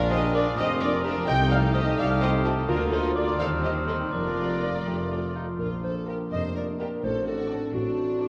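Magical and playful, this whimsical cinematic cue moves at 85 BPM in a lilting 6/8 in Bb major, a short passage cut from a longer piece. A bell-like glockenspiel struck with soft plastic mallets carries the melody alongside a floating, distant violin section played sul tasto, with the glockenspiel dropping out at 5.3 s as the harmony settles from F back to Bb for a brief second section. Beneath them, a dark clarinet, a hushed second violin section, an airy, hollow silver flute and a cor anglais weave second lines, while a very quiet bassoon and a dark, intimate viola section fill in the accompaniment. A thumb-plucked concert harp rings out arpeggios spanning several octaves, and distant, roomy French horns hold soft sustained chords. The low end rests on a double bass section, a cello section and a tuba sharing the bass line. Everything sits in a wet scoring-stage reverb, and the whole recording carries the worn, warbling pitch drift of old cassette tape, lending the music a nostalgic, storybook haze.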